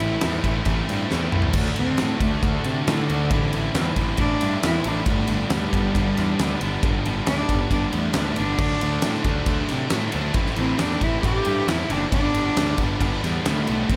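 A huge arena drum kit drives this dark, cathartic stretch of quiet-loud alternative rock at 136 BPM in a straight 4/4, with a punchy kick and fat snare sitting up front in a big room, sounding from the first moment together with a warm cello, a growly fuzz-toned picked bass and a wall of guitar riffs over A minor. A drum fill at 1.1 seconds leads into the cello solo at 1.5 seconds. From there the cello carries the melody, one player bowing sul tasto close and intimate, with light vibrato, a soft attack and an airy bow tone, colored by analog delay. Behind it, an overdriven electric guitar and a thick, bright fuzz guitar keep their riffs in the background, while a very quiet, double-tracked high-gain guitar drops out and returns at 8.6 seconds. The harmony cycles through D, A minor and G under studio reverb, and the passage is cut from a longer piece.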